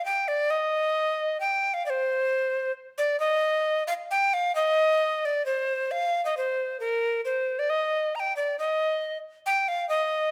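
Moving in a straight 3/4 at 134 BPM, this medieval piece, cut from a longer work, carries a mysterious, ancient mood. A lone tenor recorder plays throughout, from 0.0 to 10.3 s, ranging from Bb4 to Bb5 with tuning set to A4 = 439 Hz. Its tone is woody, breathy and bright, with lifted highs, a touch of vibrato, and a crisp tongued chiff at the start of notes. The playing has a slightly unsteady quality, and the instrument sits up front. The opening phrase returns at 3.2 s, heard through close, detailed microphones in a moderate recital hall that adds a 1.4-second tail of reverb.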